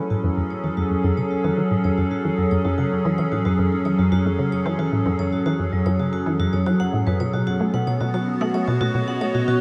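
An evolving, warbling wavetable pad with chorus and its own reverb holds sustained chords up front alongside a squelchy, resonant blip-pluck riff carrying chorus, sampler grit and analog delay, while a metallic, ringing vibraphone fades in with delayed arpeggios, all in a hypnotic, expansive piece of ambient, sequencer-driven space music at 112 BPM in F# dorian that moves from F#m7 to B7 at 7.2 seconds inside a dreamy, plate-reverb-soaked mix.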